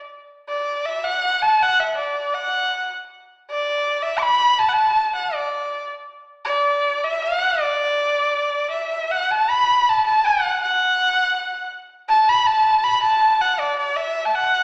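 This Chinese traditional piece is pastoral and graceful, a short passage cut from a longer work, set in the D gong mode at 80 BPM in 2/4 with a free, rubato feel. A single bowed erhu carries it alone from 0.5 to 14.6 seconds, singing between D5 and D6 with a rich, earthy voice. Light vibrato and gliding portamento give the line its grace, while the instrument's smooth top keeps it gentle. The erhu sits up front in a wet recital hall reverb with a 1.4-second decay, and the sound is tuned slightly low, to A4 = 435 Hz. At 9.1 seconds the melody moves into a new section, continuing to the end.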